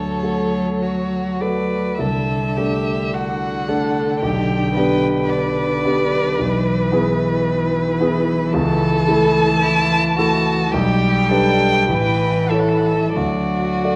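Serene and tender, this slow, rubato classical movement for piano quartet in D major unfolds at 45-56 BPM in a 14-second cut from a longer piece. A rich, bowed violin carries the melody with vibrato, portamento and a soft attack, while a second, more focused violin and a smooth, close cello shape supporting lines, above a warm, polished grand piano set up front in the accompaniment. The sound sits in a recital hall's reverb and carries the warbling pitch drift of worn old cassette tape.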